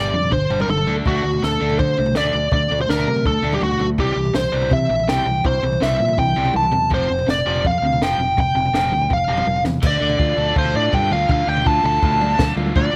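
Dry with barely any reverb, this brief indie rock excerpt at 164 BPM carries a cool, bittersweet mood as a biting, up-front lead guitar sings its overdriven melody with slapback echo over a bright, double-tracked rhythm guitar riff, a growling fingered bass with its own overdrive, and a compact cocktail drum kit with a punchy kick, high-tuned snare and dark cymbals that throws in a fill at 9.7 seconds as the chords move from G5 through D5, C and F5 to D minor.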